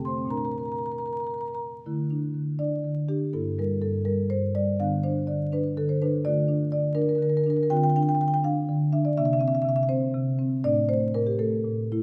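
Reflective and flowing, this contemporary classical piece for solo marimba moves in a rubato 6/8 around 75-84 BPM in D minor, cut from a longer work. The marimba, played with soft mallets on rosewood bars, sounds woody, mellow and round, close-miked and up front as it spans F2 to C6. The harmony drifts from Bbmaj7 into Dsus2 at 1.9 seconds, then through Gm6, Dm7 and C9 before resting on Asus4, all set in a moderate recital hall reverb with a vinyl crackle.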